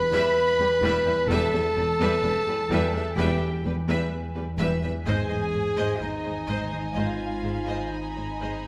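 A bright solo clarinet sits up front in this uneasy, eerie suspense film cue at 64 BPM, carrying a second line over a distant, vibrato-rich violin section and an organ-like drone with ensemble chorus that hums low from the start. A clear violin melody, lush violas, and cellos and double basses in the background fill out the bowed orchestral body, while a softer, expressive high violin layer enters at 5.1 s as the harmony shifts from E minor to A-flat. The whole cue is bathed in a wet recital hall reverb and is cut from a longer piece.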